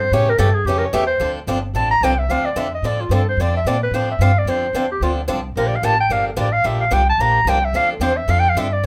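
A clear clarinet with vibrato solos up front through this bittersweet, swinging fragment of acoustic string swing in D minor at 220 BPM, backed by a woody, thumpy pizzicato upright bass on gut strings and a boxy picked acoustic guitar that enters at 0.1 seconds, moving from A7 to Dm7, Gm7 and back to Dm7 in a small room with moderate reverb.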